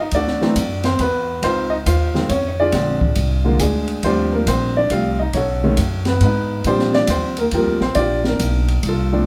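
A baby grand piano opens this short, playful jazz trio passage at 0.0 seconds, carrying the melody with a natural, up-front tone and short sustain. Upright bass and drum kit join almost at once, the bass plucked pizzicato on steel strings with a woody, growly sound. The acoustic drums bring dark cymbals, a high-tuned snare and a boomy kick, with hi-hat and ride helping to keep a swung, triple-metre lilt. Rich extended harmonies move through chords such as D9, Dbmaj9, Ebmaj9#11 and B13 before settling on Bb69. The trio plays live together in a large studio with moderate reverb, giving a warm, roomy blend until the cut at 9.3 seconds.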